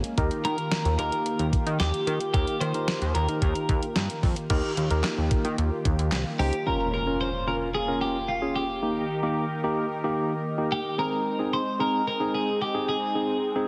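Heavily compressed with a radio-style sheen and a moderate, lush digital hall reverb, this synth-pop excerpt, cut from a longer piece, moves at 111 BPM in a straight 4/4 with a melancholic, nocturnal mood. A brassy, detuned sawtooth pad with a soft attack holds sustained chords throughout, treated with chorus and phaser and a filter sweep, while a tine electric piano, clean and direct, fills in the accompaniment. Up front, a bright, twangy twelve-string electric guitar carries the picked melody with delay from 0.4 seconds. For the opening stretch, a glossy, retro synth bass blending pulse and sawtooth waves, with pulse-width modulation and a filter sweep, drives alongside a 12-bit drum machine with a thumpy kick, fat snare, hi-hat, handclaps and crash. At 6.7 seconds the drums and bass have dropped away, an electronic impact sounds, and the harmony turns from Ebadd9 to Bbm before settling through Eb and Ab as pad, piano and guitar carry on.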